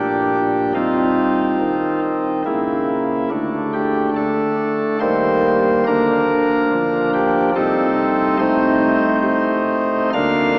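Heard through a small-speaker sound and soaked in a long cathedral reverb, this reverent, majestic chorale-style passage is cut from a longer classical piece for solo pipe organ. The organ's cornet stop sits up front with a nasal, baroque-voiced tone and a distinct chiff, spanning Bb1 to F5 in a rubato 3/4. Its harmony moves through shadowed colours such as Cmadd11, C#m6 and Eb before settling on Adim/C near 7.6 seconds.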